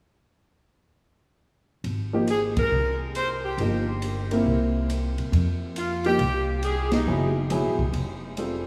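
Drenched in a vast, echoing cathedral reverb, this short cut from a longer big band swing piece bursts with energetic, joyful spirit at 138 BPM in Ab major. A woody pizzicato upright bass sits up front alongside an airy drum kit with a punchy kick and ride cymbal, while a warm upright piano fills in the accompaniment. An edgy, close-miked saxophone section carries the melody with light vibrato and a loose feel, and the full band hits accents at 2.5 and 6.8 seconds.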